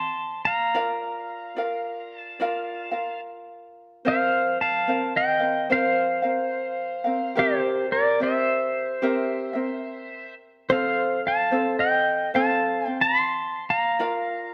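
From the opening moment, a pedal steel guitar and a ukulele play together in this languid, relaxed Hawaiian piece, a fragment of a longer recording. At a slow 72 BPM in 4/4 with a gentle swing, it sits in Bb major and moves through F, Bb, Bbsus2 and C7 before settling back toward Bb. Up front, the electric pedal steel carries the melody with a gleaming, clean tone, played with fingerpicks and compressed, its slide and volume swells giving each phrase a floating glide. Also up front, the acoustic ukulele is fingerpicked, with a light, warm touch that supports the steel's line. A moderate echo chamber reverb surrounds the pair with a soft, airy glow through to the close at 14.5 seconds.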